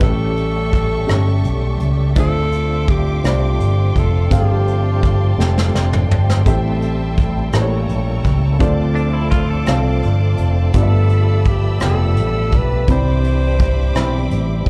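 Slow, soulful gospel in a reverent 6/8 at 56 BPM, heard as a live club performance through the PA with small-room ambience, where a vibrato-laden alto saxophone sings the melody with scooped notes and slapback echo from 0.0 to 5.8 seconds, returning at 10.8 seconds. A dark, worn grand piano with audible action noise and a round, up-front fingered bass anchor chords moving from A7 through Dm9 and G13 to Cmaj9, while lush bowed strings hold sustained chords and a fat, lightly overdriven tonewheel organ with key click and slow rotary speaker sustains chords in the background. Brushes on a vintage kit keep time and play a fill around 5.4 seconds, and a clean, picked semi-hollow guitar with tremolo adds a brief second line at 9.0 seconds.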